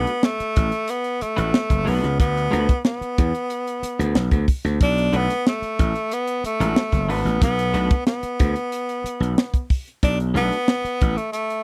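A straight 92 BPM funk groove in B minor, cool and sly, is driven by a tight, dry drum kit with a high-tuned snare and a tight kick, alongside a growly, punchy slap bass pushed through overdrive. Up front, a breathy tenor saxophone carries the whispered, intimate melody with vibrato and scooped notes, while a clean, compressed semi-hollow guitar sits in the background under a lush chorus, stopping at 10.6 seconds as the chords move from Bm7 to D5 and back. The close, dry sound of a 1970s-style studio frames this short cut from a longer piece.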